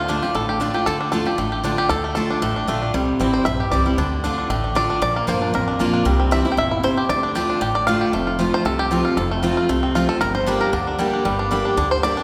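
Bluegrass in D minor with a lonesome, haunting mood, this short passage cut from a longer piece races along at 231 BPM in 4/4 with a slight swing on the eighth notes. A five-string banjo carries the melody as a solo throughout, its fingerpicked tone twangy, percussive and sitting up front in the mix. A picked steel-string dreadnought guitar, also up front, supplies a bright, full-bodied accompaniment, while a pizzicato upright bass sits lower with a woody, dark sound. The harmony moves through Dm, C and Bb before the opening phrase returns at 8.1 s, now shifting to F and then Gm at 10.2 s. A heavy church reverb with a 2.9-second tail surrounds the playing, lending the quick picking a cavernous, echoing space.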